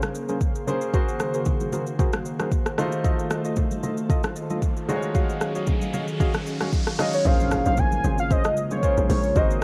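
Deep and late-night in mood, this short amapiano excerpt moves with a gentle swing in 4/4. A clear, polished baby grand piano plays accompaniment over a glassy, ethereal FM pad that sustains chords with ensemble chorus, its own reverb and sidechain pumping, both carrying a cassette-tape tint. Up front, an electronic afro-pop kit of deep kick, metallic hi-hats, rim click and shaker drives the groove, while bright, damped congas and a dark, organ-like stab with chorus and tape echo sit in the background. An electronic riser builds from 4.7 seconds into a drop at 7.3 seconds, marked by an impact, where a hollow, bouncy log drum bass arrives. Just before it, at 7.0 seconds, a velvety, detuned synth lead with chorus, vibrato and tape echo steps forward with the melody, all captured as a dry home recording on cassette.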